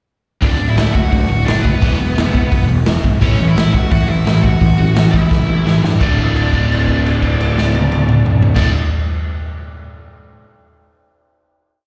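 Upbeat, rowdy punk rock in D major at 172 BPM, this complete piece pairs an up-front raw garage drum kit (punchy kick, medium-tuned snare, rolled-off top) with a growly, fuzz-drenched picked bass driving eighth notes. A very quiet cranked stack guitar and a background overdriven guitar with slapback echo chug palm-muted eighth notes through D, E5 and A5, while a smooth overdriven lead with slapback echo plays a motif-based melody partly doubled in octaves. After a drum fill from 5.3 seconds, the band lands on a final D5 chord at 6.0 seconds and holds it to 8.6 seconds, all heard like a live gig through the venue's PA with recital hall reverb.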